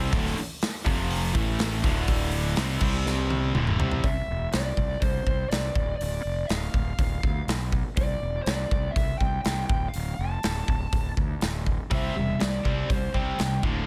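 Heavy and driving, this hard rock excerpt opens with a bright, overdriven cranked stack guitar and a high-gain distorted guitar, set further back, playing a riff together over a growly, fuzz-laden fingered bass and an up-front big rock kit with boomy kick and bright cymbals. A drum fill at 3.1 seconds leads to 4.0 seconds, where the riff guitars drop out and a dark, bluesy lead guitar takes the melody with distortion and digital delay. The two riff guitars return at 11.9 seconds, all in a light, small-room ambience.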